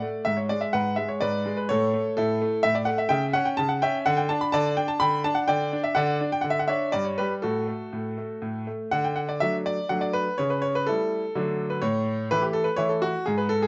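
In an even 3/4 at 125 BPM, this graceful, elegant classical-period sonatina for solo baby grand piano moves from A major into D major at 3.1 s, with a new section beginning at 8.9 s. The piano spans G2 to B5 with a clear, natural tone and long sustain, sitting up front in light reverb. The passage is cut from a longer piece.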